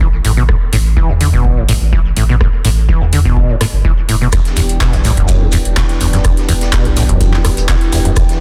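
A straight 4/4 pulse at 125 BPM drives this gritty, trippy acid house excerpt in E minor, built on a deep electronic kick and a booming analog drum machine whose handclaps, metallic hi-hats and rim clicks carry a soft-clipped snare edge, with a background vintage kit of high-passed hi-hat, shaker and snare joining at 4.3 s. Up front, a rubbery, resonant acid bass riff with overdrive, lush chorus, delay and sidechain pumping rides over a round, nasal analog bass that also pumps. The harmony moves from A5 to Em7, and at 4.3 s an airy, detuned unison pad brings chorused, sustained chords, all within a dense, heavily limited master and small room ambience.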